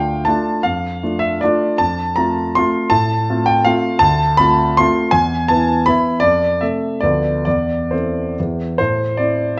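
A solo concert grand piano opens the excerpt, playing a romantic classical dance in triple time with dotted rhythms and a wistful, capricious character. The tempo moves freely with rubato, ranging from 123 to 177 BPM, and the harmony settles into A minor from about 4.0 seconds, arriving on an A minor chord at 8.8 seconds. The piano sounds intimate and natural, sitting up front with deep bass and audible action noise from the instrument itself. Its playing spans from the low register up to C6, filling the short passage alone until it ends at 9.6 seconds. A moderate studio reverb gives the sound a sense of a large room around the instrument, and the passage is clearly cut from a longer piece.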